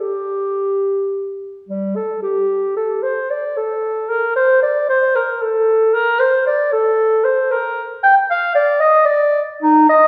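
Grave and solemn, this short passage from a longer baroque-style fantasia in G minor is played by a single unaccompanied clarinet. The pulse sits at 71-80 BPM, counted in dotted quarters in 6/8, but the rubato keeps the time flexible and free. The clarinet has a dark tone with a soft attack, ranging from G3 to G5 and sitting up front in the sound. A brief opening gesture gives way at 1.7 s to a longer second passage that carries the line through to 10.1 s. The wet recital-hall reverb, with a 1.6-second decay, gives the instrument a roomy glow.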